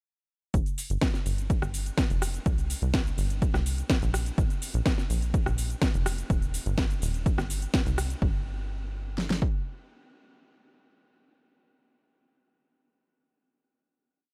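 This short progressive house piece in G minor opens at 0.5 s straight into a drop, with a tight sequencer bass and two layered electronic drum kits arriving together at a steady 125 BPM in a straight 4/4. The mood is dreamy and emotional. The deep house kit sits up front with an overdriven four-on-the-floor kick and a fat snare, while the second house kit adds metallic hats, a cracking snare, rim clicks and shaker in a programmed backbeat with a tape-warm tint. Underneath, the dark sawtooth-and-square bass plays a driving dotted rhythm low in the register, its fast-attack filter pluck decaying and its level pumping through sidechain compression. The lighter house kit drops away at 8.2 s as the piece moves into its final note, and the heavier kick and snare and the bass carry on briefly before ringing out to the end at 12.1 s, all in a dry sound.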